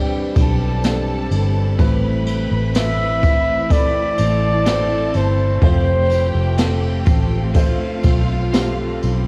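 Tender and emotional, this slow pop ballad at 63 BPM opens on a Gsus4 chord, moving to F, as an up-front mellow flugelhorn with light vibrato and scooped notes carries the melody until 6.6 seconds, over a distant, focused violin section, a soft felt-muted upright piano and a shimmering, ethereal pad. A dark, round, foam-muted fingered electric bass sits up front, while a jazz kit played with brushes, with a boomy kick and dark cymbals, joins at 0.4 seconds alongside a jingly tambourine in the background. A very quiet, clean twelve-string electric guitar adds picked arpeggios from 1.8 seconds, all captured as a homemade cassette recording with light reverb.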